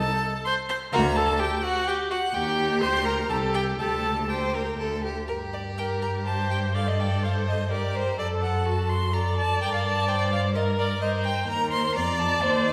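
Stormy and dramatic, this quick classical-period movement for string quartet unfolds in triple time with a rubato feel, cut from a longer piece. A rich-toned first violin carries the melody high above the ensemble, its expressive line colored by vibrato and portamento, while the viola supplies smooth, even accompaniment from the very start. At 0.9 seconds a second violin with a clear, close sound joins on a second line, and the cello enters at the same moment on the bass, sitting up front with a soft attack, sliding portamento and a deep, expressive voice. The harmony darkens around a minor home chord, with passing shifts such as an E-flat chord and a G minor add9 in the later section, which begins at 5.3 seconds. Every part is bowed by a single player with vibrato, and the quartet sits in the generous, wet reverb of a church or concert hall.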